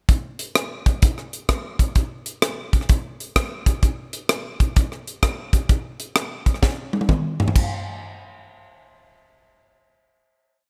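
A dry, polished studio sound frames a short gospel drum piece at 129 BPM in 4/4, swung on the eighths, with a hopeful, soulful mood. A crisp, airy fusion kit sits up front, its high-tuned snare, tight kick, hi-hat, rim click, toms and crash cymbal driving a two-beat praise groove through the breakdown. A drum fill at 6.6 seconds leads into the final hit at 7.6 seconds, and the kit stops at 7.7 seconds.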